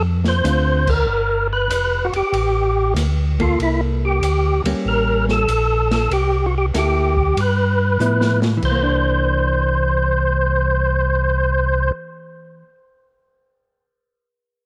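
The percussive tonewheel organ opens with a lightly overdriven, fat melody over a round, mellow tonewheel organ bass line, both up front and turning through a slow rotary speaker, with key click and chorus vibrato colouring the lead. In this swinging, soulful soul jazz organ trio cut from a longer piece, an open acoustic drum kit with dark cymbals and a boomy kick joins at 0.2 seconds, and a clean, picked hollow-body jazz guitar adds compressed comping from 0.4 seconds, with a band accent near the start. A drum fill at 8.0 seconds leads into a new section on a C9 chord, after which the drums stop at 8.8 seconds and the organs and guitar carry on in a small room with light reverb.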